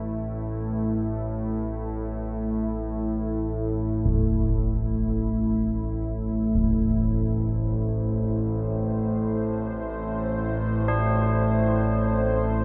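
This dark ambient drone fragment feels unsettling and ominous from its first moment. A warbling, vintage analog drone fades in low and up front, its slow attack and long release softened by chorus into a mellow, evolving hum. Above it, a deep, moody pad of detuned sawtooth and sine voices with a sub octave holds sustained chords, dark and colored by chorus and its own reverb. An acoustic concert bass drum, close and filtered to a muffled thud, sounds between 4.1 and 6.8 seconds. Near the close, at 10.9 seconds, tubular bells ring out metallic, solemn arpeggios on a single pitch, miked close and dry. A huge, wet reverb with a long eight-second tail wraps the whole space in a heavy, cavernous haze.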